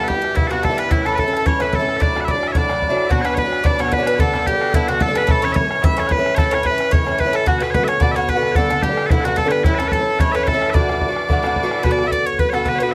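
Close, detailed microphones and light reverb give this cheerful, lively Celtic reel a crisp, present sound, cut from a longer piece and moving at a brisk 220 BPM in 4/4 with a gentle swing on the eighth notes in D major. Loud, piercing bagpipes carry the melody up front from the opening, while a second set of bagpipes, very quiet, plays a second line in the same register. A bowl-back mandolin picks its own second line on double strings, bright but sitting in the background. The Irish bouzouki provides picked accompaniment up front, its double strings giving a metallic, warm ring in the lower register. A boomy, open bodhran drives the percussion from 0.1 seconds, sounding distant as if in a large room yet still prominent. The harmony cycles through Em, A, Dadd9, Bm and G before the tune moves into a new section at 11.8 seconds.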